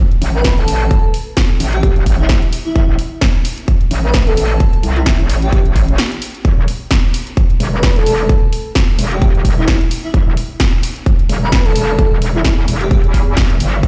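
Swung 16ths at 130 BPM drive this swaggering, gritty bass house excerpt in E minor, where a punchy, up-front electronic kick and a layered dance kit of cabasa, hi-hat and punchy snare push a metallic, saturated wobble bass with overdrive, chorus and sidechain pumping beneath an airy, detuned lead with vibrato, portamento and tape echo, all played on a big sound system in a bare room with large studio reverb and a brief break at 6.0 seconds.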